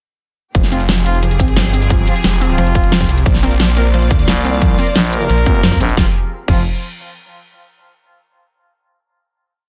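A dense, heavily limited and nearly dry mix carries this aggressive, mechanical dark technical drum and bass at 177 BPM in F dorian, where a punchy layered electronic kick and a tight dubstep kit with a huge snare, metallic hats, shaker and crash drive a swirling, phased, sidechain-pumped detuned saw bass in chopped phrases, while rich, biting symphonic strings hold sustained chords, a mellow lo-fi pluck warbles through a six-step arpeggio loop drifting against the bar with dub echo, soft-attack brass adds sparse echoing stabs, a growling FM bass joins at 4.3 s, and the drop gives way to a final F5 chord at 6.0 s.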